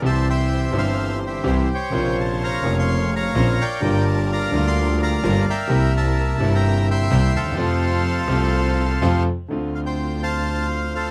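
Tense and passionate, this rubato tango excerpt puts a reedy, bright bandoneon melody up front, over a clear, vintage-toned concert grand piano accompaniment with deep bass, a focused, bowed solo double bass with vibrato, and lush string-section stabs sitting in the background, all captured dry and close with detailed microphones as the harmony moves from C through Bbmadd9, Gm7 and C7 to F before a new section begins on Dm7 at 9.5 seconds.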